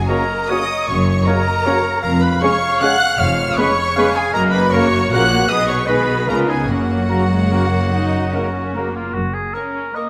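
A festive, sweeping classical passage in F# major opens at once, with a lush violin section carrying the high melody while a very quiet, airy flute section shares the upper register. In a rubato three-four at roughly 138-169 BPM, a second violin section adds a rich line in the background, joined by a mellow, distant oboe and a clear, soft-attacked clarinet, while the smooth, even viola section supplies the accompaniment. Further back, trombones hold tight sustained chords, a vintage-toned French horn section adds very quiet held harmony with light vibrato, and a trumpet section punctuates with stabs. At 0.9 s the focused cello section and the double bass section enter together to anchor the bass. The harmony moves from F# through C#7 and G#m/B before returning to F# at 6.7 s, and a moderate scoring-stage reverb gives this fragment, cut from a longer piece, a spacious glow.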